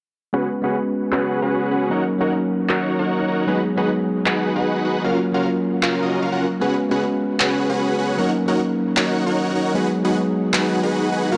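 A bell-like tine electric piano and a huge, detuned supersaw riff open this bright, lush half-time future bass piece at 153 BPM, both low-pass filtered and trailed by dub echo over C#7sus4, D#m7, G#m7 and F#maj7 chords, with filter sweeps moving through the supersaw and the layered electronic handclaps that arrive at 1.1 s, set in a dark, lightly reverberant mix.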